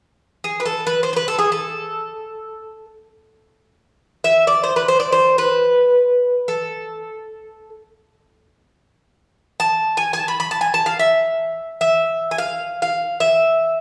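Greek folk excerpt with a dark, reflective mood, carried by a solo Greek bouzouki that enters at 0.4 s and plays the melody until 13.8 s. The picked double strings sound bright and metallic, with some octave-doubled courses, and the instrument sits up front. A wet recital-hall reverb suggests a church or concert hall setting.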